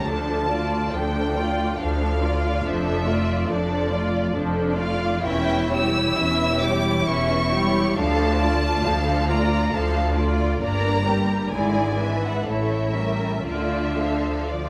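A slow, elegiac string orchestra movement in triple time opens with all sections sounding together: a distant, smooth violin section carries the melody high above an up-front second violin line with a soft attack and expressive vibrato. Underneath, a rich, distant viola section supplies accompaniment, while cellos sit in the background and lush double basses anchor the low end. The rubato phrasing and wet recital-hall reverb lend a solemn breadth, and the minor-key harmony darkens through a dominant chord before settling home at 13.5 seconds in this brief excerpt from a longer piece.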